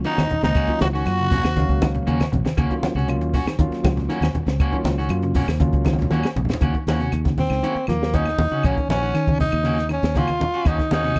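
Afrobeat groove at 119 BPM in Eb dorian, hypnotic and intense, captured as a dry, close 1970s-style studio cut from a longer piece and resting on an Ebm7 chord. A compact cocktail drum kit with a high-tuned snare and punchy kick sits beside a round, foam-muted fingered bass, while congas with thin skins and woody claves tick along in the background. Two slightly broken-up electric guitars fill the middle: one dark and fingered, playing stabs with slapback echo, the other twangy and picked, running arpeggios through tremolo. An overdriven tine electric piano played through a combo amp adds gritty accompaniment until 6.2 seconds. A raspy tenor saxophone and a soft, whispered trumpet state a brief line together near the start, and after a drum fill a growling, up-front tenor saxophone takes a solo from 6.6 seconds to the end.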